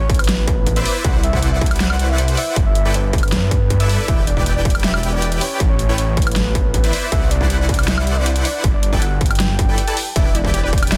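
A dense, heavily limited modern mix with little reverb carries this emotional, lush future bass excerpt in a half-time feel, built on a thick, detuned saw bass sitting up front and huge supersaw chords entering at 0.8 seconds through lush chorus and sidechain pumping over a harmony moving from Aadd9 through Cmaj9#11, G69 and Em7. A soft, round octave-layered lead carries the melody with vibrato, chorus and dub echo, while a distorted electronic kick and a dubstep kit of huge snare, bright hats, ride and woodblock, both tape-tinged and treated with studio reverb, drive the groove. After a brief break at 9.8 seconds, a punchy, warbling unison pluck slips into the background at 10.2 seconds with vintage 12-bit sampler grit.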